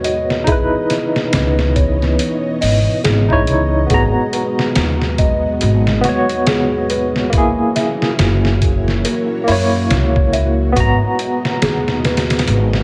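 Trip hop at 70 BPM in G# minor with a lazy 16th-note swing, smoky and hypnotic, cut from a longer piece and moving through C#m9, G#m7 and F#7 over its 12.8 seconds. A barky, clean tine electric piano sits up front with tremolo and tape echo, while a gritty, pitched-down sampler-style kit with a thumpy kick and medium-tuned snare, re-recorded in a large room, punches alongside a woody, growly pizzicato upright bass. Behind them a dark sawtooth string machine on cellos holds full-bodied chords through ensemble chorus. A delicate, tinkling music box spins airy arpeggios through tape echo, all set in light digital ambience.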